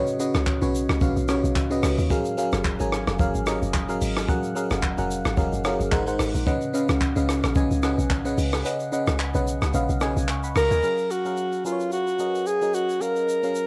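A whispered, breathy alto saxophone takes the solo melody at 10.6 seconds, sitting up front with a cassette-tape tint over a glassy, bell-like FM electric piano that carries the jazzy extended chords through chorus and phaser. Underneath, a deep, round log drum bass with a percussive bite joins a compact acoustic cocktail kit of handclaps, hi-hat, rim click, shaker and punchy kick, whose dark, rolled-off top feels close and small-roomed. The kick drops out from 8.7 to 10.8 seconds before the bass stops, giving this relaxed, warm amapiano fragment a lightly reverberant, homemade cassette feel.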